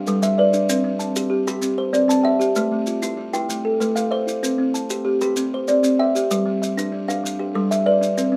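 A lightly reverberant recording opens on two vintage-sounding, band-limited kalimbas playing arpeggios in a hypnotic, warm mbira-style interlocking cycle, a southern African traditional piece in C major at 128 BPM in a straight 12/8. The up-front kalimba rings with a hollow, woody box tone, while the second kalimba on a solid board gives short, buzzing thumb-plucked notes. Close, grainy maracas sit mellow and low beneath them as the harmony moves from G through C and Am, then back to C and G, and this brief cut from a longer piece ends at 8.4 seconds.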